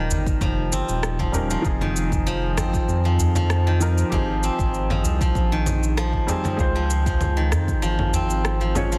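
A dense, heavily limited modern mix sits in a small room with light reverb, giving this short cut from a longer organic downtempo piece an earthy, warm mood and a gently swung 4/4 groove. Up front, a steel-string zither played with fingerpicks rings out silvery arpeggios through a digital delay, while a round analog bass blends square and sine tones with a wave-folded, evolving edge, tube saturation and sidechain pumping beneath it. A felt-muted upright piano supplies soft, intimate accompaniment with audible action noise, its thin felt tone also pumping and trailing digital delay. Electronic cabasa, congas and rim click enter at 0.1 seconds with a softly clipped snare and studio reverb, and the electronic kick drum follows, landing deep and produced from 0.3 seconds, while a small, close and dry udu sounds in the background until 8.3 seconds. The harmony moves from Eb7 to Fm7, then to Abmaj7 and Dbmaj7.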